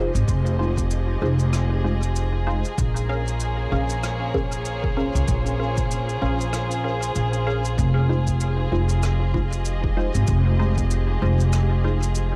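Hazy and spacious, this ambient dub excerpt moves at 96 BPM in 4/4 with a 58% swing on the sixteenths, set in F minor and tuned to A4 = 438 Hz. A dark studio string section holds bowed chords with a soft attack, light vibrato and an intimate sul tasto tone. Alongside it, a filtered dub chord stab adds muted, full-bodied sawtooth hits treated with phaser, cassette tape colour and dub echo. Up front, a woody pizzicato upright bass carries the low end as the loudest part. A punchy, layered electronic kick drum joins at 0.3 s and stops at 10.9 s, while a quiet shaker and rim click played with brushes adds small-room texture fed into dub echo. The harmony moves from Fm7 to Bbm7 at 2.8 s and back to Fm7, and the music sits in light reverb and a small room ambience.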